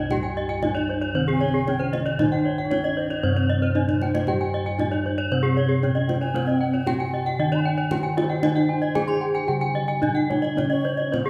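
Brilliant and hypnotic, this Balinese gamelan passage moves at a steady 115 BPM in a straight 4/4, set in a C pelog scale and cut from a longer piece. A bronze metallophone struck with a wooden mallet carries the melody, its paired tuning producing shimmering beats. Two brighter metallophones played with horn mallets spin arpeggios above it, while a mellow, soft-toned metallophone with padded disc mallets sits in the background with a low accompaniment. Dark, round bossed gongs anchor the bass with a smooth, beating resonance, and a deep, distant kendang played with hard hands adds percussion, with a drum fill at 3.8 seconds. From 1.3 seconds a bamboo bansuri joins on a second line, airy and touched with vibrato, its crisp attack ringing into the moderate concert-hall reverb.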